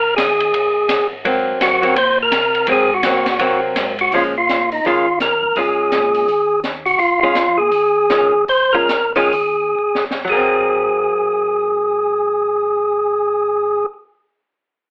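Soul jazz organ trio in Ab mixolydian, bluesy and soulful, swinging in 4/4 at a tempo between 117 and 167 BPM that slows from 7.0 to 10.3 seconds. A fat, percussive tonewheel organ with third-harmonic percussion, key click and fast rotary speaker carries the melody up front, while a second, round, dark organ with vibrato and slow rotary sits in the background on bass lines, and a dark, compressed hollow-body archtop guitar comps from 1.2 seconds through changes built on Bbm7, Eb9sus4 and Ab9. An acoustic kit in a small room, with dark cymbals, a high-tuned snare and a boomy kick, plays a fill at 9.8 seconds and stops at 10.4, and the whole piece, cut from a longer one, carries moderate studio reverb and a telephone-like sound.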